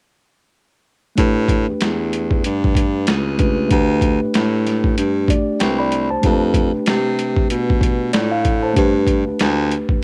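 A breathy baritone saxophone with light vibrato sits up front from 1.2 seconds, carrying the low bass line in a smooth, relaxed jazz-hop groove with swung sixteenths, cut from a longer piece. A mellow, clean tine electric piano accompanies through Asus2, D7sus4, F6 and Gadd9, while a gritty, overdriven boom bap sampler-style kit with thumpy kick, medium-tuned snare and hi-hat sits up front with a compressed, small-room character. Light reverb softens the mix.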